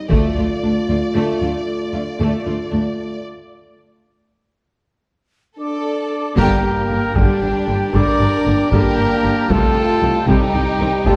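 Epic and heroic, this cinematic orchestral film-score excerpt moves at 77 BPM in a straight 12/8 in G minor, with a lush, vibrato-rich violin section singing the melody over mellow French horn chords, a second violin line, and viola, cello and distant double bass sections underneath, all bathed in a wet scoring-stage reverb. After a build-up whose break drops the harmony away at 3.2 s, an airy silver flute line and soft-edged trumpet stabs appear at 5.6 s. At 6.4 s a full-band accent brings back the hard-stick taiko and the double basses and adds a very quiet trombone section and tight woodwind chords as the harmony settles onto Gm and then Cm.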